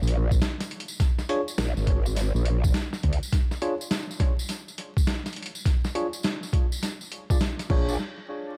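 An echo-heavy, vinyl-crackled mix with light reverb carries this swaggering, playful glitch hop excerpt at 103 BPM in a swung 4/4 over a Bb7#9 chord: a saturated, wobbling growl bass with chorus sits up front until 3.2 seconds before a brief return, a thumpy, pitched-down electronic kick and a gritty, tape-toned boom bap sampler-style kit of crash, hi-hat and medium-tuned snare keep time, a jingly, close tambourine plays throughout, and a bell-like, bright tine electric piano plays stabs from 1.3 seconds, pumping from sidechain compression under a filter sweep and tape echo.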